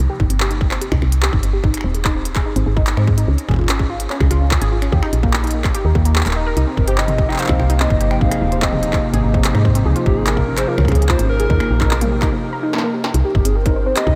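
A woody, round FM bass opens this glitchy, intricate IDM excerpt, joined almost at once by a dusty, detuned pluck spinning arpeggios through chorus and tape echo, a distorted electronic kick, and an industrial kit of clanging snare, crisp hats, snaps, claps and toms, all moving over a dark Cm–Ab–Db–Eb cycle. Around 6.8 seconds a mellow, nostalgic lead with vibrato arrives alongside a lo-fi, tape-like pad of sustained chords, lending the busy groove a wistful haze. After a short break and drum fill, the passage returns to C minor, and a faint flickering granular texture surfaces soon after at 13.6 seconds.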